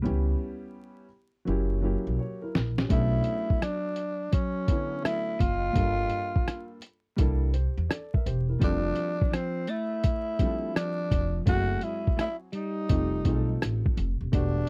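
A dark grand piano with audible action noise and a woody, pizzicato upright bass open this mellow, nocturnal jazz-hop excerpt, moving through extended jazz chords with a swung sixteenth-note feel. A drum fill at 2.2 seconds brings in a muffled, pitched-down, sampler-style kit with a thumpy kick. At 2.9 seconds a breathy, growling tenor saxophone takes the melody up front with scooped notes and vibrato, while a clean semi-hollow electric guitar with analog chorus adds a second line, all in a dry, close 1970s-style recording with vinyl crackle.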